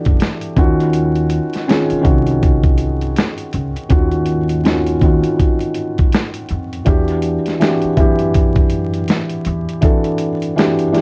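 Lo-fi hip hop with a hazy, nostalgic mood and a swung feel, cut from a longer piece. A felt-muted upright piano sits up front with a soft, mellow tone, audible action noise, cassette-tape color and plate reverb, moving from Em9 to D#m9 and back to Em9 at 6.9 seconds, while a woody pizzicato upright bass plays beneath until 9.7 seconds. A gritty, compressed sampler-style drum kit with a thumpy kick, medium-tuned snare and hi-hat also sits up front, and the dark production carries vinyl crackle.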